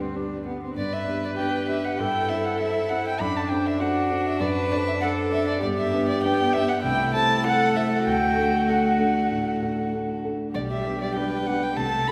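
A woody, vibrato-rich violin carries the melody up front in this spirited, cheerful classical-period piano quartet movement in G major at a quick 98 BPM, joined by a clear, nasal cello on a floating second line, an airy, intimate viola and a mellow, deep-bassed concert grand with a dark tone, all set in a wet concert hall whose reverb is heard from further back in the room.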